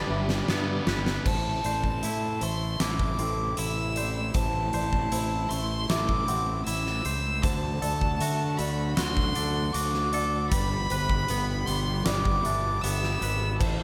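This cinematic, cathartic post-rock excerpt in A dorian at 78 BPM opens on a drum fill, with a sludgy overdriven guitar riff sounding in the background until 1.2 seconds beneath a distant, biting violin melody, dark chamber strings holding soft-attack chords, felt-muted upright piano arpeggios with audible action noise, and scooped, twangy clean guitar arpeggios. Fuzz-laden fingered bass enters up front at 0.1 seconds and the huge arena kit at 0.3, its punchy kick and fat snare driving a build-up over Am, D and G. Slapback echo touches the violin, piano and twangy guitar, and a moderate concert hall reverb surrounds the ensemble.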